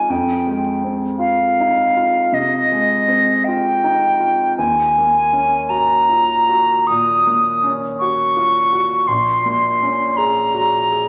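In a rubato 12/8 lilt at 54 dotted-quarter beats per minute, this mysterious, wistful impressionist duo excerpt sets a pure, straight-toned, tongued concert flute up front, carrying the melody between Eb5 and Eb6. Beneath it, a warm, intimate grand piano accompanies from Bb1 to Ab4, its deep bass and audible action noise sounding natural as the harmony moves from Fm9 to Ebm7 at 4.6 seconds and to Bbm9 at 9.1 seconds. A wet scoring-stage reverb and a vinyl crackle wrap the classical duet in a spacious atmosphere.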